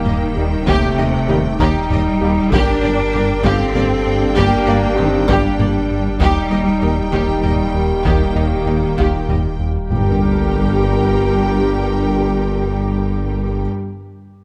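A close, detailed recording with light reverb presents this brooding, futuristic cue, a hybrid orchestral and electronic film score in G minor that moves at a slow 65 BPM in a straight 6/8, cut from a longer piece. A solo duduk carries the melody with a punchy, folk-style voice, scooped notes and light vibrato, trailed by tape echo, while a violin section also carries the melody on a high G5 and a lush second violin section sits distant in the background alongside a bowed viola section and a very quiet, hollow, flute-like pad. The low end is thick: a focused cello section, a deep sine sub bass, a round analog bass riff with ring modulation, a faint double bass section and a dark tuba all anchor the Eb and Gm harmony. Mellow French horns and present trombones join with sustained chords at 0.4 seconds, while a twangy resonator pluck traces arpeggios and a felt-muted upright piano adds intimate texture, action noise audible, until around 9.9 seconds. 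Taiko drums struck with heavy sticks play in a small room until 10.0 seconds, and at 9.9 seconds a huge sub drop impact marks the shift into the closing section as the strings, brass and pad sustain to the end.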